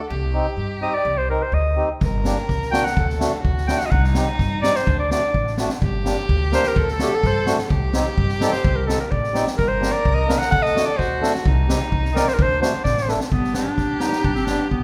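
Recorded in a church or concert hall, this festive yet bittersweet klezmer excerpt carries a moderate recital-hall reverb around a straight 2/4 at 128 BPM in D phrygian dominant. A clear, close-miked clarinet plays the melody up front in a classical style, while a single bowed violin adds a rich, focused second line with vibrato and a boxy edge. A reedy, mellow accordion fills in the accompaniment, and a woody, growly upright bass is plucked pizzicato beneath the chords as they circle through Cm, Gm and D. A street-band drum kit enters at 2.0 s, its boomy kick and high-tuned snare sitting up front with a natural, big-room sound. A drum fill at 12.8 s leads into a new section at 13.3 s, which lands on G.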